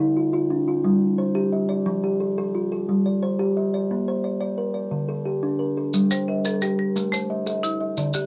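A dark, woody kalimba with a hollow-box ring carries this hypnotic, rippling excerpt of southern African traditional music alone from 0.0 seconds, spinning an interlocking mbira-style arpeggio cycle in a straight 12/8. Grainy maracas join up front at 5.9 seconds, and a bright, percussive marimba struck with hard mallets enters at 6.1 seconds with arpeggios of its own. Both the kalimba and marimba carry a cassette-tape tint, and the whole sits in a close, wet booth ambience with the intimacy of a home recording.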